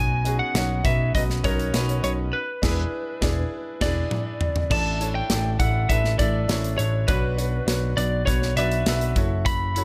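A lightly driven, slightly broken-up lead guitar sings a dark, compressed melody over bright, woody upright piano and a punchy, overdriven picked bass from the start, with the airy, polished studio drum kit joining at 0.3 seconds to power this warm, anthemic piano-driven pop excerpt through a band accent and a drum fill that close its first phrase at 4.7 seconds before the tune repeats.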